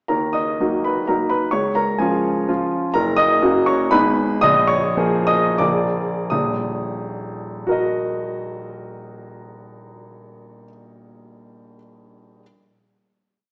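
Heard through a small speaker and wrapped in the wet reverb of a recital hall, this brief romantic dance in 3/4 and Eb minor is played by a solo grand piano with a smooth, vintage, up-front tone. The tune sounds in octaves over bass and chords that stress the second or third beat, with dotted rhythms and a nostalgic, capricious rubato moving between 80 and 134 BPM. The complete little piece slows from 2.2 seconds, passing through Db, Gb, Abm and Bb7, and comes to rest on an Eb minor chord held from 6.3 seconds.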